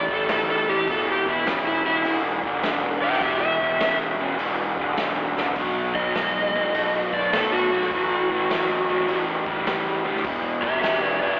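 Smoky and heavy, this blues rock and southern rock power-trio excerpt has a swung feel, with a dark, overdriven slide guitar carrying an up-front solo over a raw, lo-fi garage guitar riff that is double-tracked and coated in slapback echo. Underneath sit a fuzzed, direct-and-amped picked electric bass and a vintage acoustic drum kit with a medium-tuned snare and punchy kick; the drums enter at 0.1 seconds and break into a fill at 5.3 seconds. The sound is that of a live gig heard through the venue's PA, with recital-hall reverb and a thin, telephone-like tone.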